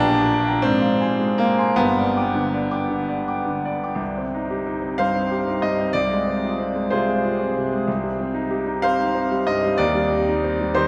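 Classical romantic character piece for solo piano in C minor, brooding and passionate, moving in a rubato 6/8 at 52-64 BPM. A brilliant, up-front concert grand with deep bass and long sustain spans G1 to D6, opening over Gm/Bb, Fm/Ab and G harmonies before a new section settles on C minor at 4.0 seconds. The piano sits in a wet cathedral reverb with a 4.8-second decay, and this fragment, cut from a longer work, closes on Cm/Eb at 9.8 seconds.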